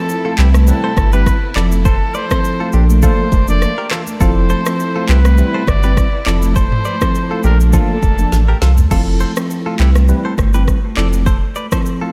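A lilting 102 BPM afrobeats groove with a gentle 16th-note swing drives this joyful, sunny fragment, as an up-front electronic drum kit with deep kick, woody snare, rim click, handclaps, shaker, toms and crash rides over a round sine sub bass, while distant high-tuned congas, a twangy compressed clean guitar riff with tape echo, and a bell-like tine electric piano with ensemble chorus circle Cmaj7, Fmaj7 and Bbmaj7 chords, a breathy, intimate trumpet with tape echo sings the melody until 8.6 seconds over lush background strings, and a drum fill at 8.3 seconds leads into a new section at 8.9 seconds.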